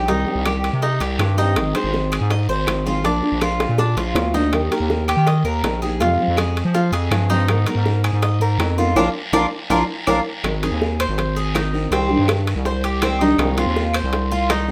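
A growling, thick FM bass sits up front in this danceable Latin cut, a 14.7-second excerpt from a longer piece in the Cuban son and guajira style at 162 BPM in a straight 4/4. Beside it, a bright, metallic Cuban tres picks arpeggios on double strings, some of them octave-doubled, while a fingerpicked nylon-string guitar with a deep classical tone and audible finger squeak fills in the accompaniment. In the background, tight, high-tuned bongos played with soft hands, ringing metal-shell timbales and a raspy guiro heard from a distant large room keep the groove moving, with very quiet woody claves entering at 0.5 seconds. The harmony centers on C minor, moving through Ab, Bb, Eb and Fm before shifting at 10.4 seconds to a new section built on added-ninth colours of Ab and C minor. A drum fill at 3.6 seconds punctuates the opening section, and a second fill together with a band accent marks the lead-in to that change, all set in a moderate studio reverb with a warm, danceable feel.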